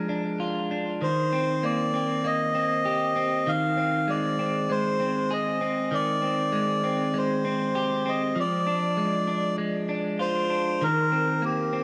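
A straight 4/4 pulse carries this haunting, melancholic dream pop excerpt, where an up-front electric guitar at the edge of break-up plays twangy, bright arpeggios through lush chorus and tape echo from the start, a reedy, breathy melodica takes the melody with its own tape echo from 1.0 seconds, and chords such as Cm7, Fm7, Abmaj7 and Fm6 drift through a dark production and a moderate scoring stage reverb.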